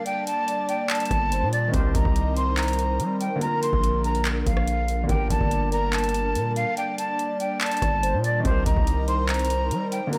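Soaked in plate reverb, this dreamy mix turns a menacing, hard-hitting trap groove into something hazy, a short cut from a longer hip hop piece in a half-time feel. A breathy jazz flute carries the melody up front, its straight tone and lifted highs given a soft edge by a low-pass filter, while a felt-muted upright piano sits mellow and intimate in the background with its own filtered accompaniment. An airy pad holds sustained chords with a slow attack, long release and chorus shimmer, and a velvety synth lead with vibrato, chorus and analog delay traces a smooth second line from 0.1 seconds. The booming analog drum machine enters at the same moment, pairing a deep kick with metallic hats, handclaps and rim clicks, and a saturated, aggressive 808-style bass arrives at 1.1 seconds, distorted and heavy as it decays. Underneath, the harmony moves through Gmadd9, Cm7 and Bb before circling back to Gmadd9 and Cm7.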